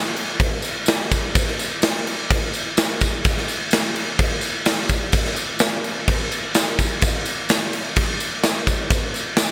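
A big acoustic rock drum kit opens at 0.2 seconds, with a punchy kick, a medium-tuned snare and bright crash cymbals sitting up front in a big room. A jingly tambourine joins at 0.6 seconds, sounding distant and placed in the background of a large room. The groove is straight rock in 4/4 at 127 BPM, heard in this short cut from a longer piece. The whole mix is soaked in a huge ambient reverb with a long tail, giving a hazy, dreamy atmosphere, and a faint mains hum lingers underneath.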